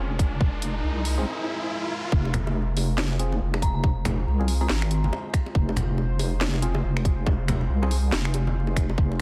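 A brooding, heavy deep dubstep piece in F minor at 140 BPM opens on a moody, detuned pad and a deep wobbling square-and-sine bass up front, with a tight kick and a garage kit of finger snaps, hats and a cracking, softly clipped snare driving a swung half-time feel as an electronic riser builds to the drop at 2.1 s. Hollow organ stabs with dub echo enter during the build-up, ringing bongos and congas follow after the drop, and an eerie, inharmonic bell with phaser sounds a lone Bb5 between 3.6 and 5.2 s. The dense, heavily limited master carries light digital ambience and vinyl crackle.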